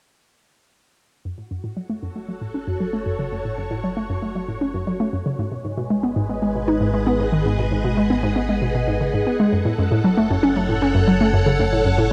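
In a straight 4/4 pulse, this mysterious, expansive stretch of sequencer-driven ambient space music opens at 1.3 s with a hollow, bouncy square-wave pluck riff up front, joined at 2.2 s by a swirling, vintage phased string machine holding bright sustained chords and at 2.9 s by a dark, evolving analog drone bass, with all three parts fading in as F#m moves to G#m7 and back beneath a moderate plate reverb.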